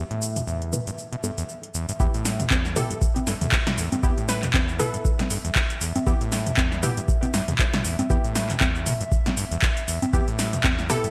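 Bright, 1980s-style digital production with light reverb frames this hypnotic, trippy acid house excerpt, moving at 118 BPM in E minor with a swung 16th-note feel. From the start, a squelchy, resonant sawtooth acid bass grinds out an overdriven riff between E2 and B2, thickened by tube saturation and a digital delay. Behind it hovers a warbling, nostalgic lo-fi pad holding sustained chords, dark and in the background, with chorus and pumping sidechain, while a muted, detuned dub chord stab adds mellow, filtered hits through chorus and delay. An analog drum machine sits up front with a punchy snare, metallic hats, handclaps, cabasa, congas and toms, all overdriven and treated with gated reverb. At 2.0 seconds the drop arrives as a deep, overdriven electronic kick enters, and at 2.8 seconds a glassy, crystalline wavetable pluck plays a brief melody between A4 and B4 with a filter sweep, chorus and delay.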